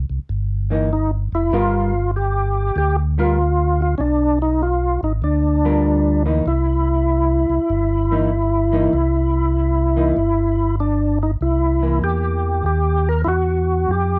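A round, mellow tonewheel organ opens this greasy soul jazz organ trio excerpt, holding down the bass line up front with light overdrive, chorus vibrato and a slowly turning rotary speaker. A clean, picked hollow-body electric guitar joins at 0.7 seconds to comp chords in its dusky middle register, and at 0.9 seconds a second tonewheel organ takes the melody, full-bodied and percussive with a second-harmonic click, its tone also lightly driven, vibrato-tinged and spun through a slow rotary cabinet. The groove swings in four, moving from a sharp-ninth C chord through a long stretch on G7#9 and plain C before turning to C7#9 as the opening theme comes around again. The guitar drops out at 12.6 seconds, leaving the two organ parts to carry on together. Light reverb and a shadowy, cosy production give the trio an intimate, late-night glow.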